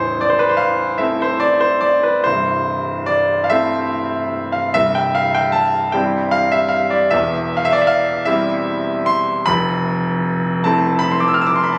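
A 6/8 pulse of 45-52 dotted-quarter beats moves with free rubato through this mournful, yearning romantic nocturne in A minor, cut from a longer piece. A single grand piano, brilliant and up front with long sustain, spans from A0 to F6 as the harmony passes from Am through C to a closing Fmaj7 at 9.5 seconds. The phone capture places the instrument in a recital hall with moderate reverb, lending a polished, present sound.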